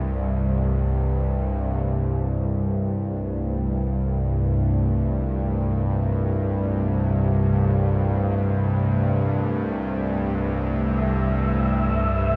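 Cavernous and desolate, this dark ambient drone, cut from a longer piece, rests on an up-front, tense, string-like bowed drone with vibrato and a ring-modulated edge. A deep, moody pad with shimmer reverb sits in the background, fading in from 1.9 s as the harmony moves from Asus2 to F. At 10.7 s an airy, breathy, wind-like tuned noise texture enters, and the dark production is bathed in a long cathedral reverb.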